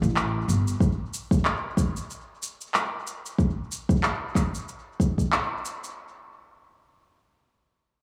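An echo-heavy, small-room mix with moderate spring reverb frames this mystical, earthy organic downtempo excerpt at 93 BPM with a loose sixteenth-note swing, where a woody, thumpy pizzicato upright bass on steel strings sounds up front only until 0.7 seconds, a deep, tape-warm electronic kick stays forward until 5.3 seconds, and close, produced electronic shaker and handclaps carry on until 5.9 seconds.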